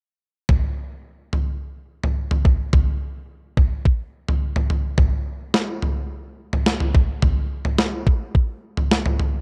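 A straight 4/4 pulse at 107 BPM drives this short dream pop fragment, cut from a longer piece, with a haunting, hazy mood. The only part is a clean 12-bit digital drum machine, sounding from 0.5 to 9.3 seconds, playing kick drum, snare drum and toms. Its sampler-style electronic character comes through in a thumpy kick and a medium-tuned snare, with a tape-warm grain that sits up front in the mix. Light reverb and a digital ambience surround the beat, and the overall production leans dark. The whole passage stays within a single section, giving a brief, shadowy glimpse of the track's groove.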